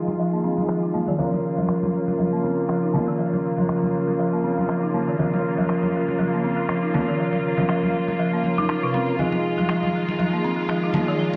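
Hypnotic and warm, this afro house excerpt features a woody marimba playing arpeggios through digital delay, while a mellow, flute-like tonewheel organ sits up front with stabs colored by chorus vibrato, a slow rotary speaker and delay, both parts shaped by filter sweeps. Beneath them, a clear studio string section holds bowed chords with light vibrato and a biting edge, moving from Fm7 to Bbm at 1.2 seconds and back at 9.2 seconds. Ringing, hard-hand congas and a tape-tinged electronic cabasa with finger snaps, tucked in the background, drive the swung groove inside a bright 1980s-style digital sound with plate reverb.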